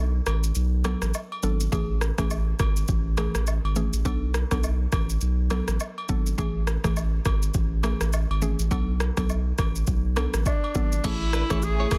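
A swung afrobeats groove at 103 BPM in A major rolls forward on a deep, overdriven house drum kit of kick, hi-hat, shaker, rim click and crash, with a thick, saturated sub bass sitting up front and faint agogo bells and woodblock alongside. A woody, round FM synth pluck with chorus and phaser traces the gentle Bm7 to Amaj7 changes, giving this romantic, breezy fragment of a longer piece a dense, polished sheen. Near the close, a breathy, intimate tenor saxophone enters at 10.5 s, and a clean, bright electric guitar riff with tape echo appears at 11.0 s, while a hollow, flute-like pad drifts in softly behind them.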